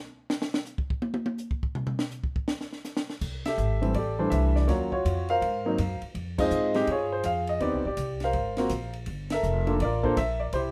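Sophisticated and relaxed, this brisk 164 BPM swinging jazz piano trio excerpt opens with a short drum solo on a compact, dry cocktail kit with dark cymbals, a high-tuned snare and a tight kick, before a woody, growly pizzicato upright bass enters at 3.2 seconds and a grand piano with long sustain joins at 3.5 seconds over rich extended chords, with band accents at 6.3 and 9.3 seconds in a light reverb.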